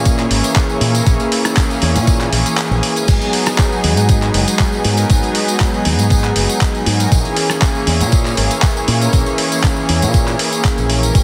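A steady 119 BPM pulse drives this cosmic, sensual nu-disco cut, with a thumpy, tape-tinged electronic kick sitting up front, falling away briefly from 2.6 to 3.1 seconds before returning. Around it, a dusty soul sampler-style kit adds gritty, overdriven handclaps, hi-hat, rim clicks and crash cymbal, while a quiet tambourine contributes a small-room acoustic shimmer. Underneath, a bright fingered electric bass with an envelope filter pumps against the kick, anchoring chords that move from A#m7b5 to G#m7 at 3.1 seconds and back at 7.1 seconds. A smooth, warbling analog pad of detuned, wave-folded tones with a soft attack carries chorus and digital delay, and an intimate chamber string section bowing sul tasto with light vibrato breathes in time with the sidechain. The whole mix has a light reverb and a heavily compressed, radio-like sheen, and the passage is cut from a longer piece.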